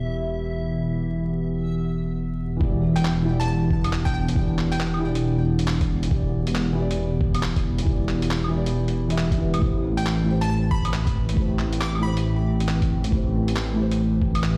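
Vinyl crackle and a large studio reverb surround this wistful, nocturnal future garage excerpt, which sounds as if it is played over a big sound system in a bare room. Set in E minor at 137 BPM with a 16th-note swing, it opens on a reversed, dreamy, granular texture hovering above a warbling, nostalgic tape-like pad, a soft felt-muted upright piano with audible action noise, and a deep, rumbling detuned saw bass that sits up front with tube saturation. The piano, pad and bass all carry sidechain pumping, and the harmony moves from Em7 to Am7 at 9.6 s. At 2.6 s a muffled, thumpy, pitched-down kick drum arrives with overdrive, and at 3.0 s a lo-fi sampler-style kit of claves, handclaps and hi-hat joins it, compressed and gritty. A hollow, bouncy square pluck with chorus, delay and a filter sweep adds brief, bright melodic phrases high in register above the dark, mellow bed.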